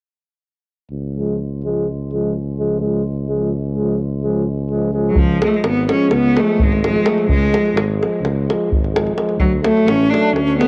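Balkan folk in the manner of a Balkan brass band, this excerpt moves at 255 BPM in a straight 9/8, set in C# phrygian dominant with a mood both bittersweet and fiery. A mellow tuba with light vibrato carries the bass up front from 0.9 seconds, and two euphoniums enter at 1.2 seconds as classical-style accompaniment: one warm, punchy and roomy yet distant, the other dark and close-miked with light vibrato, sitting in the background, both colored by cassette tape. At 5.1 seconds a clear, bowed cello takes the melody up front, smooth and even with vibrato, its line carried on cassette tape and tape echo. A tight, acoustic davul joins close at hand at 5.2 seconds, marking the start of the second section. The harmony rests on C# before shifting to D at 9.4 seconds. The whole sits in a moderate spring reverb with the homespun character of a cassette home recording.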